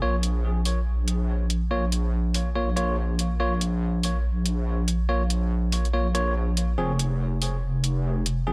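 Deep dubstep at 142 BPM in a half-time, swung feel, heavy and meditative, this excerpt sets an up-front, saturated wobble bass with a square-wave, detuned edge and chorus under bell-like electric piano stabs through a low-pass filter and dub echo and layered electronic hi-hats re-recorded in a small room, sitting on B-flat minor until the harmony drops out at 6.8 seconds in a dry mix.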